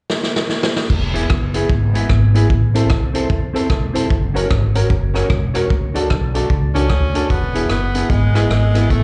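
Bouncy, upbeat ska at 150 BPM in E mixolydian with a swung feel, cut from a longer piece and heard as a live gig through the venue's PA with club reverb, opens with a drum fill on a punchy vintage kit with dark cymbals before a woody, growly pizzicato upright bass enters at 0.9 seconds, joined by a mellow, clean electric guitar with spring reverb and clear upright piano stabs with tape echo over chords moving from E through Am, F# and D, until an edgy tenor saxophone with light vibrato takes the melody at 6.7 seconds.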